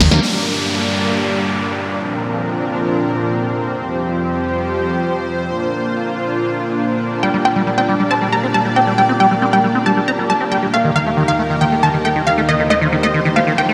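A dreamy, reverb-soaked trance mix opens on a lush, airy supersaw pad holding sustained chords up front through the whole excerpt, its detuned unison sawtooths thickened by analog chorus and a sub octave beneath. The mood is emotional and driving, in a straight 4/4 metre, with the harmony moving from G minor through Bbadd9 and Fsus2 before settling on Gm/Bb and Eb. A squelchy, resonant liquid acid bass plays arpeggios, sounding only a brief blip at the start before returning at 7.2 seconds, its smooth sawtooth tone carried by phaser, chorus and tape echo. At that same point a punchy, bright unison pluck takes the melody up front, its detuned sawtooth and sine layers roughened by a vintage 12-bit sampler grit and trailed by tape echo. Electronic downlifter and riser effects sit lower in the mix, sounding through the opening seconds and returning near the end of this cut from a longer piece.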